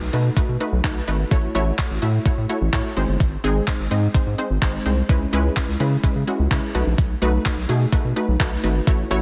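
Confident and driving, this short dance-pop excerpt in straight 4/4 runs on a crisp, overdriven 8-bit drum machine with a thumpy kick, handclaps and hi-hat, re-recorded in a small room and sitting up front. A round, dark analog bass and a lush, detuned unison pluck with a punchy filter attack both pump under sidechain compression, moving through B7, F#m7/A, G#, C#m7 and back to B7. Light reverb surrounds a dense, heavily limited modern master.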